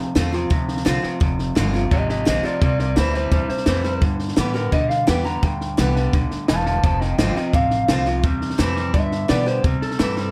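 A twangy lead electric guitar through a small old amp carries the melody from 1.9 s, its bright, slightly broken-up tone dressed in plate reverb and tape echo, over a rollicking, upbeat rockabilly groove at 171 BPM in C major. Beneath it, a second, darker and lo-fi electric guitar plays a low riff, and a picked acoustic archtop guitar with old strings adds plate-reverbed accompaniment, while a pizzicato upright bass with gut strings gives a woody, thumpy bottom. A compact cocktail drum kit sits dry and up front with a high-tuned snare, tight kick and hi-hat, all in a light room reverb in this short excerpt cut from a longer piece.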